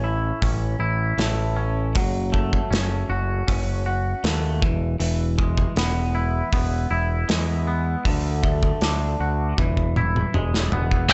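A scooped, high-gain electric guitar, bright, double-tracked and up front, crashes in with a distorted picked riff at 11.1 s, delivering the loud half of this restless, bittersweet alternative rock excerpt. Before that moment, a twangy, clean electric guitar plays fingered arpeggios coated in lush chorus, its compressed tone sitting close to the listener. Beneath it, a growling picked bass adds dark, round overdrive, while a loose acoustic indie drum kit enters at 0.4 s with a punchy kick, medium-tuned snare, hi-hat, toms and dusky crash cymbals in a pumping studio room. At a steady 79 BPM in straight 4/4, the harmony moves through A, F#m, E and D before returning to E, and a drum fill from 9.6 s leads into the riff's arrival. The sound is dry and close, with a dim, rolled-off top end.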